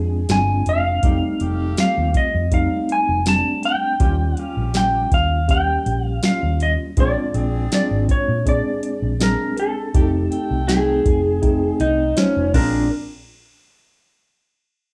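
A clean, dark lap steel carries the melody of this laid-back, gritty soul blues at 81 BPM in a straight 4/4. Beneath it sit a worn, slightly out-of-tune tine electric piano with light overdrive, a round, punchy, foam-muted fingered bass, and a dry, overdriven vintage rhythm box with deep kick, crisp snare, metallic hats, tambourine and crash, as the chords move through ninths on Bb, F and Eb. From 1.0 seconds a clear horn section holds sustained chords low in the mix, and at 10.7 seconds a picked electric guitar through a small old amp adds a slightly broken-up, lo-fi second line, all heard as a band playing live in one large studio room with moderate reverb.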